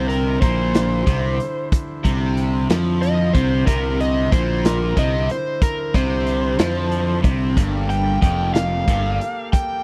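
An overdriven slide guitar, played with fingerpicks, carries the melody as a solo through this hypnotic, kaleidoscopic psychedelic rock fragment in 6/8. Beneath it, a double-tracked, biting overdriven guitar plays a riff colored by phaser, and an up-front fingered electric bass adds a round, dark fuzz tone. The raw garage drum kit enters at 0.1 s with a punchy kick, a medium-tuned snare and hi-hat, its sound smooth with a rolled-off top. A reedy vintage combo organ holds clean sustained chords with light vibrato in the background. The harmony rests on Cadd9 before moving to Gmadd9 at 7.6 s, and the riff guitar and bass stop at 9.2 s, all captured in a dry, close 1970s-style studio recording cut from a longer piece.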